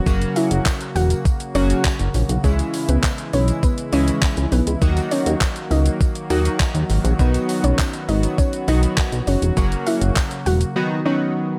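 A dark, glossy synth bass sits up front in this energetic, driving dance-pop excerpt, pumping against a gated 80s drum machine whose thumpy, overdriven kick, handclaps, hi-hat and shaker punch through with gated reverb, while a faint tambourine jingles in a small room. Bright retro synth keys with a filter sweep and a smooth, detuned analog pad carry the chords from F# through C#m, D#m and B, and a soft, round, warbling pluck with tape echo plays the melody above. The mix stays dry, and the drums and bass drop away near 10.7 seconds, leaving a silent gap until 11.6 seconds.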